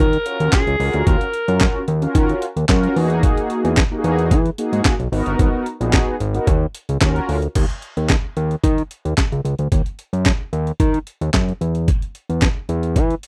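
A raspy, growling alto saxophone opens this funky, danceable early-eighties boogie funk excerpt at 111 BPM, its brief solo line touched with slapback echo before it stops at 1.8 s. Mellow, brassy synth brass with chorus, vibrato and a filter sweep carries the harmony through Ebm9, Emaj9#11 and Abm9 until 7.4 s, while a fat, saturated analog bass with a nasal, detuned sawtooth edge sits up front underneath. A gritty, compressed breakbeat kit with a thumpy kick, high-tuned snare, handclaps, hi-hat and crash cymbal runs to 13.3 s in a dry, close studio sound, with the bass and drums carrying the closing stretch alone.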